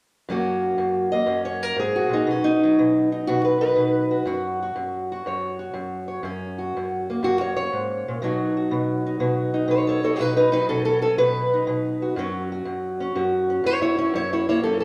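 A fingerpicked steel-string acoustic guitar carries this short acoustic country blues excerpt alone, sounding from 0.3 seconds to 14.8 seconds. Its tone is dark and boxy with a parlour character, placed up front, and it ranges from F#2 to D#5. The mood is soulful and gritty, set at 122 BPM in 4/4 with a 68% swing on the eighth notes. In F# major, the harmony moves between F# and B, returning to F# at 12.2 seconds. A stone room reverb with a 1.4-second tail surrounds the guitar, giving the feel of a live performance captured in one room.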